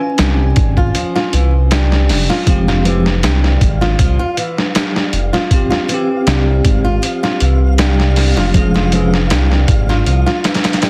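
This brooding, melancholic trip hop passage, cut from a longer piece, moves at 79 BPM in F harmonic minor with a lightly swung 16th-note feel. A bell-like tine electric piano carries the accompaniment, its clean tone shimmering through harmonic tremolo and tape echo until it stops at 9.2 seconds. A dark flamenco guitar adds fingerpicked arpeggios with audible finger squeak, also touched by tape echo. Underneath, a rumbling detuned saw bass sits up front with beating unison voices, alongside a sampler-style drum kit that is pitched down and muffled, with a thumpy kick and soft clipping on the snare, as if re-recorded in a small room. From 3.0 seconds a grainy, flickering texture hovers in the background on F5, bathed in its own reverb. The harmony moves from Db to Fmadd9 and settles on Db/F, and the dense, heavily limited mix stays dry and is dusted with vinyl crackle.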